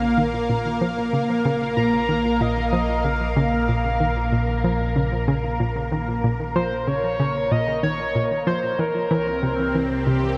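Mysterious and cosmic, this fragment of sequencer-driven space music floats in a vast, echoing space with a long, wet reverb tail. A lush, thick unison pad holds sustained chords up front over a warbling analog drone in the bass, while an airy, wind-like tuned noise texture breathes in the background and a hollow, bouncy square pluck repeats its riff from 0.2 seconds. At 1.8 seconds a shimmering, retro pulse-width lead enters with vibrato and tape echo, carrying the melody up front as the harmony moves from Bb minor to C7 near the close.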